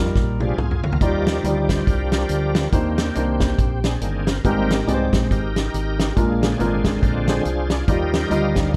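A swung 4/4 groove at 140 BPM drives this short cut from an uptempo gospel piece in Eb major, with a reverent, soulful mood. The acoustic country drum kit of hi-hat, kick, snare and toms comes in at 0.2 s with a fill, its punchy kick and medium-tuned snare sitting up front in a small, natural room. Beneath it, a fingered electric bass gives a dark, round low end, while an upright piano fills out the accompaniment with a woody tone. The bright tonewheel organ enters at 0.4 s and takes the solo, a full, shouting, lightly overdriven voice coloured by chorus vibrato and a slow rotary speaker. The chords move from Ebmaj9 through Cm9, Abmaj9 and Bb7 before settling back on Ebmaj9, all framed by light reverb in a warm, dusky production.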